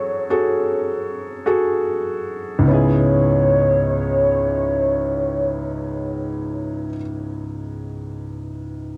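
A felt-muted upright piano and a velvety, detuned synth lead open together in this longing, heartbroken pop fragment, the lead holding a high sustained melody through chorus, vibrato and tape echo until 6.9 seconds while the soft, intimate piano carries the accompaniment over F#madd9 to C#m7 harmony to 9.0 seconds, all in a lightly reverberant home cassette recording that slows down over its first 2.7 seconds.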